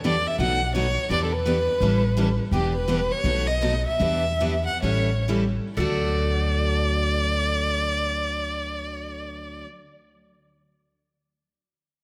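Swinging and lively, this short excerpt of acoustic string swing in the jazz manouche style sits in D major, with a swung 4/4 feel and a tempo ranging between 118 and 169 BPM that slows down from 2.5 to 5.8 seconds. A bowed violin carries the melody up front, its expressive line coloured by vibrato and portamento and sounding close. Two picked steel-string acoustic guitars supply the accompaniment, one full-bodied dreadnought and one boxy parlour guitar set further back, both with the sparkle of fresh strings and audible finger squeak. A woody pizzicato upright bass anchors the low end through a progression moving from B9 and Em7 through A9 and B7 before settling on D. At 5.8 seconds, as the second section begins, a very quiet lap resonator guitar played with fingerpicks and slide adds a metallic, nasal second line. A moderate concert hall reverb gives the ensemble a spacious, resonant setting.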